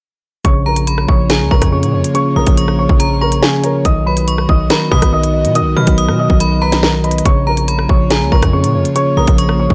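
A dark, cold drill cut opens at 0.4 seconds with the drum kit, distorted 808-style bass, a concert grand piano and a tine electric piano all arriving together, set in Bb phrygian at 141 BPM with a half-time feel. The electronic kit sits up front, its hard-clipped kick, sharp snare, crisp hats and rim clicks driving the groove, while the 808 below is heavy and saturated, with a gritty noise layer and a fast, decaying attack. The grand piano carries the melody with a deep, somewhat boxy tone and a touch of delay, supported by the clean, direct tine electric piano playing accompaniment. A metallic FM bell enters at 0.7 seconds as a bright, inharmonic second line that rings and warbles through chorus and delay, and at 1.0 seconds an airy, breathy pad drifts in behind everything with slow-attack, chorused sustained chords and a vintage feel. The harmony moves from Bbm to B and back to Bbm in a dry, close-sounding mix, and the passage is cut from a longer piece.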